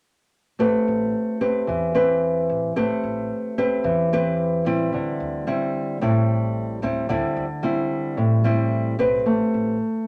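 At 0.6 s a fingerpicked nylon-string guitar and a pizzicato upright bass begin together in this relaxed, sophisticated bossa nova, cut from a longer piece. The guitar sits up front with a small, warm acoustic tone, carrying the accompaniment across a range from A2 to B4. Behind it, the upright bass plays a woody line on steel strings from A1 to E2, set well in the background. The tempo is 111 BPM in a straight 4/4, and the tuning sits slightly high at A4 = 445 Hz. The harmony moves from Am9 to D9sus4 and returns to Am9 near the close, with the bass stopping at 9.8 s and the guitar ringing on until 10.1 s. A wet studio ambience with a short reverb gives the two acoustic instruments a soft sense of room.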